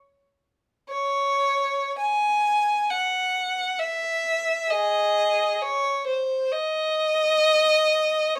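Yearning and meditative, this brief passage of classical music is a free, expressive piece for a single unaccompanied violin, cut from a longer work. The violin plays from 0.9 s to 8.4 s, staying within the span from G#4 to G#5 and moving with a flexible, rubato feel. Its bowed tone is rich and smooth, shaded by vibrato, and it sits up front in the mix. A light reverb lends the solo line a touch of space. The result is an intimate, searching moment that feels like a fragment of a larger reflection.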